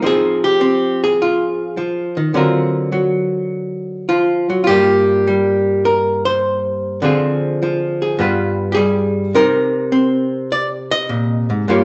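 A lone archtop guitar, miked and amplified, opens this moody, cool solo jazz passage cut from a longer piece, its clean, picked hollow-body tone dark and sitting up front as it moves between G2 and Eb5 with a loose swing and rubato phrasing. The harmony drifts from Fm9 through D7alt, Gm7 and Dm7b5 before G7b9 resolves to Cm7 at 9.3 seconds. A generous large-studio reverb surrounds the instrument, and the live one-room recording keeps the top end soft and muted.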